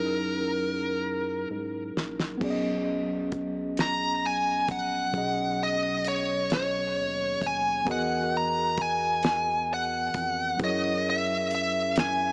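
A dark, overdriven lead guitar carries the melody up front, its bluesy distorted lines trailed by analog delay, in this tender, sensual slow R&B excerpt in B major at 44 BPM in six-eight. Beneath it, a mellow, clean tine electric piano, also touched with analog delay, comps through rich chords from F#13 to B69, Emaj9#11 and F#9, while a rubbery, hollow square-wave bass sits in the background. A damped 70s drum kit with a fat snare and tight kick enters at 2.0 seconds with a fill that leads into the next section at 2.4 seconds, all set in a small, echo-heavy room with a small-speaker sound.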